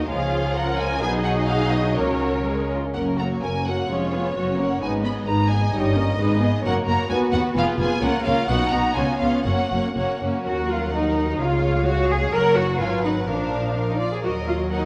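A bright, intense first violin section carries the melody with vibrato from a distance, over a close, smooth second violin line, a clear viola accompaniment and a lush cello and up-front double bass foundation, all bowed. This quick, restless classical-period movement for string orchestra moves in 2/4 at 118-132 BPM with a rubato feel, starting in F# major before turning urgently to Eb minor at 10.5 seconds. The sound sits in a wet scoring-stage reverb and carries the worn, warbling pitch drift of old cassette tape, and the excerpt is cut from a longer piece.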